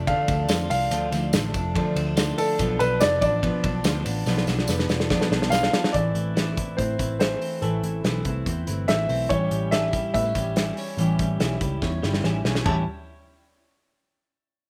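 A straight 4/4 pulse at 143 BPM drives this wistful, bittersweet snippet of jangly indie pop, where a loose, up-front drum kit with a pumping small-room sound, dark cymbals and a tight kick plays fills at 4.3 and 11.8 seconds, while a jingly, close tambourine sits in the background until 5.8 seconds. A woody upright piano with audible action noise and slapback echo carries the melody. Beneath it, a full-bodied fingerpicked jumbo acoustic guitar, a bright, twangy twelve-string electric playing arpeggios through spring reverb and slapback, and a round, foam-muted vintage bass move from Dm through Bdim to Am and A7.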